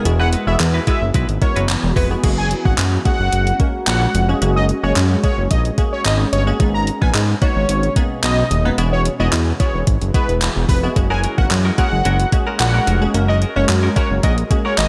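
A thick, detuned sawtooth bass drives this energetic, bittersweet dance-pop excerpt at 110 BPM in a straight 4/4, its fast-attack notes sitting up front and pumping against the sidechain. Beside it, a gated 80s digital drum machine delivers a thumpy, overdriven kick with handclaps, hi-hat and crash cymbal, all bathed in gated reverb. A fat, bright sawtooth lead with a sub octave, vibrato and a filter sweep carries the melody from 0.2 seconds, shaped by slapback echo, delay and sidechain pumping. Crisp, evolving wavetable chord stabs pump underneath, while a very quiet, ethereal pad adds octave-up shimmer, granular texture and chorus with a slow attack and long release. A twangy, clean, direct-recorded electric guitar picks a compressed riff with subtle chorus and slapback echo at the opening, then returns at 11.0 seconds, as the harmony moves through Eadd9, F#add9 and G#madd9 under light reverb.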